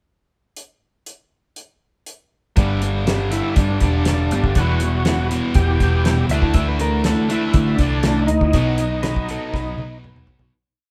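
Brooding and gritty, this short classic rock piece moves at 121 BPM in a straight 4/4, with a damped 70s drum kit opening alone at 0.6 seconds, its dry, fat snare and tight kick sitting up front in a rock groove. At 2.6 seconds most of the band arrives for the verse: a sludgy overdriven guitar chugs palm-muted eighth notes in the background, a tight distorted guitar rings out bright chords, and a round, dark hollow-body bass stays locked to the kick drum. A picked steel-string acoustic guitar strums sixteenths in open chord shapes beneath them, while an overdriven tonewheel organ, thick through a slow rotary speaker and chorus vibrato, carries a motif-based melody of song-like phrases. From 6.3 seconds a clean, twangy lap steel adds compressed, answering blues licks on slide as the harmony passes from G through Emadd9 and Dadd9 to B. The band sounds as if playing live in one room with moderate reverb, and the piece fades out under a closing drum fill.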